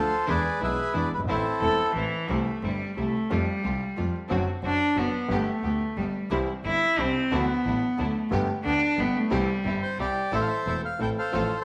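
Passionate and melancholic, this rubato tango fragment in C major at 180 BPM and 3/4 opens with a reedy, up-front bandoneon melody, then gives way to a floating, soft-attacked bowed cello solo from 2.3 to 10.3 seconds before the bandoneon returns at 9.8 seconds, all over an intimate vintage grand piano whose action noise is audible, a clear bowed double bass with light vibrato, and lush symphonic string stabs in the background, bathed in a wet echo-chamber reverb and small-room ambience.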